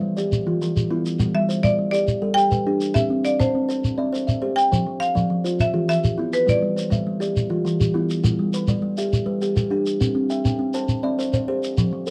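Hypnotic and rippling, this fragment of southern African traditional music turns an mbira-style interlocking cycle in a straight 12/8 at 136 BPM in G mixolydian, where two kalimbas weave arpeggios throughout (one airy and hollow-boxed under the thumb, the other dark, mellow and up front with a fingertip touch over a solid board), a grainy, close and dry shekere keeps time from 0.2 s, and a bright, percussive rosewood marimba struck with hard mallets carries the melody from 1.3 to 7.0 s, all set in a dark production with light reverb.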